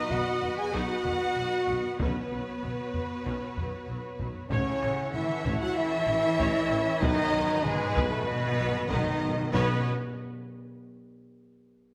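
A steady, straight 4/4 pulse at 95 BPM drives this majestic, triumphant orchestral film cue in B mixolydian, a short piece cut from a longer work. The taiko ensemble, struck with heavy sticks in a live room, carries the beat beneath a mellow French horn section that holds sustained chords and sits most prominently in the mix, supported by a lush studio string section. The melody belongs to a focused symphonic violin section with smooth vibrato, joined quietly by a studio violin section playing a second line, while a pure, hollow concert flute adds a distant tongued second line. Beneath them, a very quiet viola section provides expressive accompaniment, and the bass is shared by a background cello section, a woody, dark double bass section and a solo tuba. The harmony moves from B through Bsus2 to A and settles on Badd9, and the close timpani, heard briefly at the start, returns with a fill at 7.0 s. 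Everything sits in a generous scoring-stage reverb that lends the ensemble a broad cinematic sheen.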